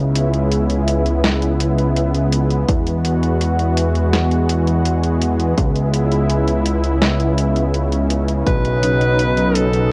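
Synthwave at 83 BPM in C# minor, cinematic and driving, where a lush, warbling unison pad with sidechain pumping holds sustained chords over a fat, nasal analog bass, a tape-worn 8-bit drum machine's hi-hat and snare enter at 0.2 seconds, a punchy electronic kick joins at 2.7 seconds, and near the close a breathy alto saxophone with light vibrato and tape echo arrives at 8.5 seconds, followed at 8.8 seconds by dark, round synth brass stabs in the background, all moving through C#m7, Eadd9 and Badd9 in a lightly reverberant home cassette recording cut from a longer piece.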